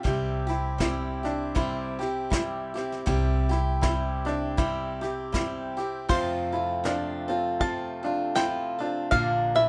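Acoustic folk for a duo or small band, this gentle, peaceful excerpt moves at 79 BPM in 4/4 with a lilting swing on the eighth notes. A bright, picked archtop guitar carries the accompaniment up front, joined by a felt-muted upright piano whose soft arpeggios come with audible action noise. A reedy accordion holds sustained chords in the background, while a woody pizzicato upright bass anchors the low end. A soft brush kit with a punchy kick and medium-tuned snare sounds natural and close, as if in a small room. At 6.1 seconds the harmony shifts from C to F and a twangy, fingerpicked bluegrass banjo enters with the melody, before the chords move on to Bb at 9.1 seconds, all under light reverb.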